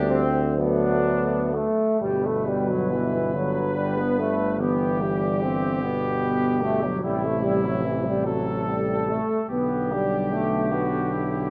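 Lyrical and serene, this hymn-like classical piece for brass band moves in a gentle, rubato 6/8, drawn from a longer work. A clear cornet carries the melody with a soft attack, while a flugelhorn with light vibrato sings a second line from a distant, roomy position. Beneath them, a mellow trombone section sits up front in the accompaniment, a solo trombone with light vibrato adds warmth from the background, and an up-front tuba anchors the bass. After a brief opening phrase, the music settles into a longer passage from 2.0 seconds, with the harmony moving through G, E minor, A minor and G over B. A moderate scoring-stage reverb surrounds the close, detailed recording with a sense of space.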